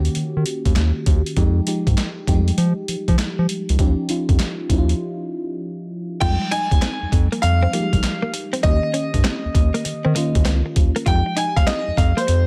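Bouncy and slick, this new jack swing cut from a longer R&B piece moves at 99 BPM in F minor with a swung sixteenth-note feel, cycling between Eb7, Fm9 and Eb9 chords. A gritty, sampler-style boom bap kit sits up front, pitched down and overdriven, with a thumpy kick, high-tuned snare, hi-hat, handclaps and crash cymbal. Beneath it, a round analog bass built from square and sine waves with a wave-folded, evolving character holds the low end with a deep, sustained tone. A warbling vintage FM electric piano carries the chords through a phaser, its mellow decaying notes tinged by a noise layer, and a break arrives at 5.0 seconds. At 6.2 seconds a clear concert grand piano takes the melody with long sustain and digital delay, joined by a picked, clean electric guitar riff recorded direct with subtle chorus, all set in a digital ambience.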